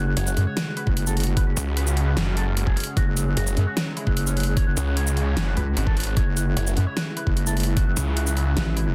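Aggressive and heavy, this cut from a longer heavy wobble dubstep piece moves in a half-time feel. A saturated, square-wave wobble bass sits up front throughout, joined from 0.2 seconds by a snarling distorted saw bass, detuned and growling with a moving notch, both loud and driving the low end. An overdriven dubstep kit with a huge snare, bright hats and shaker enters at 0.2 seconds, and an overdriven, knocking electronic kick arrives at 0.9 seconds before dropping out at 8.6 seconds. Underneath, a lush, warbling unison pad holds sustained chords with chorus and sidechain pumping, while a dark, clean electric guitar through an envelope filter plays the melody, coloured by spring reverb and tape echo. The dense, heavily limited master keeps the sound dry and close, with the basses dominating the mix.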